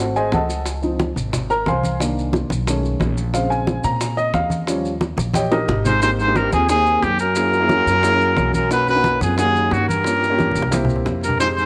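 A brisk, straight 4/4 pulse at 179 BPM drives this danceable, sunny Afro-Cuban jazz passage in Ab major, cut from a longer piece. Tight, high-tuned bongos sit in the background while close, dry congas with a thin, bright skin and soft hands join at 0.2 seconds alongside grainy, vintage-sounding maracas. A dark, mellow baby grand piano leads the opening as its solo feature, carrying rich harmony such as Ab7b9, Dbmaj7 and Bbm9 over a woody, thumpy pizzicato upright bass with gut strings. Drum fills at 5.3 and 10.4 seconds mark the turns, and at 5.9 seconds a clear trumpet with light vibrato and slapback echo takes the melody up front, its soft attack carrying a distant, roomy quality. Beneath it, a breathy baritone saxophone adds a whispered, intimate subtone second line in the background. Light reverb and small-room ambience frame the ensemble.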